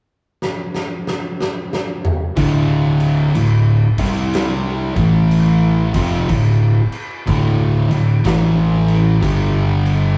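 Stoner and doom metal at a crawling 61 BPM in D minor, heavy and sludgy, with a swung eighth-note feel; this is a short cut from a longer piece. An oversized, low-tuned acoustic drum kit opens with a fill from 0.4 seconds, its boomy kick, fat snare, toms and crash sounding saturated and gritty in a big, pumping room. At 2.4 seconds two thick fuzz guitars come in together on the riff, one up front and distorted, the other darker and set in the background. A growly, overdriven fingered electric bass joins them at the same moment, direct and amped, anchoring the low end. The riff moves through D5, C5, A5, D minor and back to A5 before landing on G5, all captured as a rough rehearsal-room recording with a moderate booth ambience.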